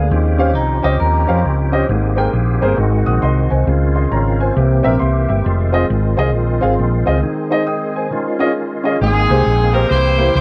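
A swung 4/4 pulse at 135 BPM drives this jubilant, uplifting uptempo gospel clip in Ab major, anchored by a dark, round hollow-body electric bass up front and a woody upright piano with long sustain. A reedy, bright tonewheel organ with key click, a fast rotary speaker and chorus vibrato holds chords beside a mellow French horn section in the background, while a twangy, compressed electric guitar adds a brief second line near the start. After a break, the horns stop and a punchy, tight saxophone section with slapback echo takes the melody from 9.0 seconds, all set in light reverb.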